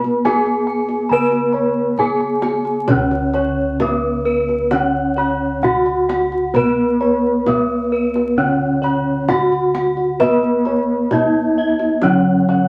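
A bronze metallophone carries the serene, ceremonial melody up front, struck with a wooden mallet so its paired tuning rings out in airy, shimmering beats. Beneath it, a second metallophone played with padded disc mallets gives a mellow, soft accompaniment, while a bright horn-mallet metallophone and softly beaten bossed gongs weave arpeggios above. Round, boxy bossed gongs anchor the bass, and a tight, band-limited kendang played with hard hands adds a vintage touch, all set in a wet studio reverb with vinyl crackle in this short cut from a longer Javanese gamelan piece.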